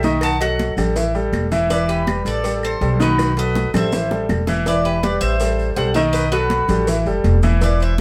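Warm and nostalgic, this brief excerpt of Cuban son and guajira moves at 162 BPM in a straight 4/4, with a bright, metallic tres picking the melody over chords such as B7, Em and Am7 while a breathy flute with vibrato and a crisp chiff carries a second line. A clear, polished grand piano with audible action noise spills arpeggios up front beside a growly, thumpy pizzicato upright bass, and a drum fill runs from 3.2 to 4.7 seconds. Ringing high-tuned congas, round low-tuned cowbell and bongos, grainy distant maracas and woody, band-limited claves, which stop at 4.5 seconds, sit in the background of a moderate studio room where the band plays live.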